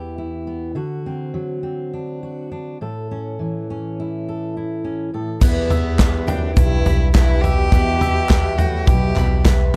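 A straight 4/4 pulse at 103 BPM carries this wistful, bittersweet indie folk passage in E minor, cut from a longer piece whose arrangement builds as it goes. It opens with a full-bodied, fingerpicked steel-string acoustic guitar alone, moving from Em through D7 to A. At 5.4 seconds the texture fills out. A rich, bowed cello takes the melody with smooth vibrato, a soft-attack French horn adds a low second line, and a very quiet, dark brass ensemble holds sustained chords beneath them. A shimmering, octave-doubled twelve-string guitar and a woody mandolin playing arpeggios sit in the background, while a growly pizzicato upright bass and an up-front country drum kit, with a punchy kick, crash, snare and toms, anchor the groove alongside a grainy egg shaker. Hollow group handclaps join at 6.0 seconds from a distant room, and the fingerpicked guitar drops out at 7.4 seconds, leaving the fuller ensemble in a dry, warm, dark production.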